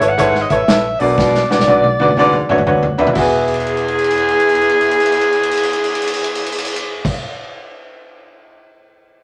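Uptempo 1960s-style soul at 121 BPM with a swung, uplifting feel, in which a breathy, mellow alto saxophone carries the melody with light vibrato over a woody, up-front upright piano, a dark, foam-muted fingered electric bass, and a baritone saxophone riff with scooped notes entering at 0.2 seconds, while a punchy, small-room acoustic drum kit plays fills, joined by a brief piano fill from 2.2 seconds, before the drums play on alone until 8.6 seconds in moderate studio reverb.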